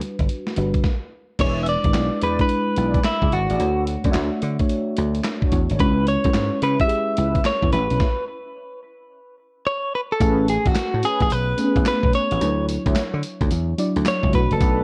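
A swung sixteenth-note groove at 109 BPM in 4/4 drives this flirty, upbeat new jack swing excerpt in A major, cut from a longer piece. A gritty, compressed sampler-style kit sits up front with a thumpy kick, medium-tuned snare, hi-hat, handclaps, tambourine and crash, all carried by gated reverb and the sound of a large room, while a punchy, foam-muted thumbed slap bass joins almost at once. A soft, round FM electric piano with chorus and phaser lays down dark seventh and ninth chords underneath. After a brief stop, a bright, clean electric guitar recorded direct takes the picked melody at 1.4 seconds, treated with analog delay, as sawtooth synth brass with chorus adds detuned, evolving stabs in the background. The band halts for a longer break from 8.0 to 10.2 seconds before a final stretch on lush Amaj9 and Dmaj9 chords, the whole mix colored by cassette tape and a light digital ambience.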